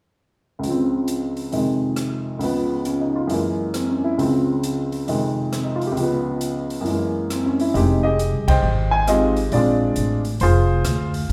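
A moderate hall reverb gives this short jazz piano trio fragment, cut from a longer piece, a church-like air and a late-night, moody glow. An upright piano sits up front with a woody tone, carrying the melody from the start over a swung feel and chords that circle through Dbmaj7, Fm7, Db7 and Gb9. A big-band-style drum kit swings along at a lower level, airy and polished, with dark ride cymbals, hi-hat, rim clicks and a punchy kick. At 7.7 seconds the harmony shifts to Fm9 and Bb9, and a pizzicato upright bass with steel strings joins, standing close in the mix. The full trio hits a shared accent at 8.4 seconds before the fragment cuts off.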